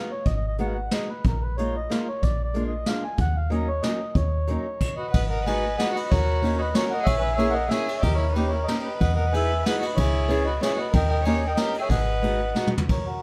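Musette waltz in a bittersweet, whirling mood, played with a rubato lilt and a shift into a new key partway through this short cut from a longer piece. A reedy, round accordion carries the melody up front over a fingerpicked steel-string acoustic guitar, a soft, woody FM bass with a quick, decaying attack, and a roomy vintage drum kit played with brushes, its cymbals dark and its top rolled off. At 5.0 s a boxy, expressive bowed violin joins with vibrato and portamento on a second line, and a drum fill at 12.5 s closes the passage in light reverb.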